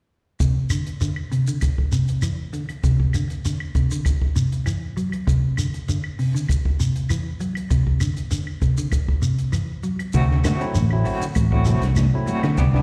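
A straight 4/4 afrobeat groove at 99 BPM drives along joyfully, carried by a compact cocktail drum kit with a punchy kick and high-tuned snare, a grainy shekere up close and woody claves in the background, while a dark, clean electric guitar picks arpeggios over Cadd9 with subtle chorus and slapback echo. At 10.1 seconds the harmony moves to D7 as a round, amped fingered bass arrives up front alongside dark, slightly broken-up guitar stabs with tremolo and plate reverb, soon joined by thin-skinned high-tuned congas and a barky, lightly overdriven tine electric piano. The whole is heard as a live gig through the venue's PA in a moderate club reverb, cut from a longer piece.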